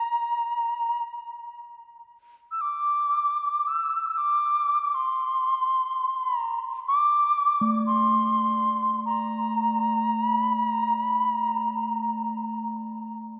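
The recording is a dreamy mix soaked in a long plate reverb, its tails hanging in the air for a few seconds. This is spacious, calm world meditation music in free time, cut from a longer piece. An alto ocarina carries the melody from the start, up front with a clay, airy tone, rolled-off highs, vibrato and tongued, expressive phrasing in a high register, while an analog delay trails behind its notes. At 7.6 seconds a bronze singing bowl joins as texture, also up front, struck with a wooden striker to give a bright, metallic ring with slow beating in its sustain. The ocarina falls away at 12.6 seconds, leaving the bowl's meditative resonance to carry on alone until 13.4 seconds.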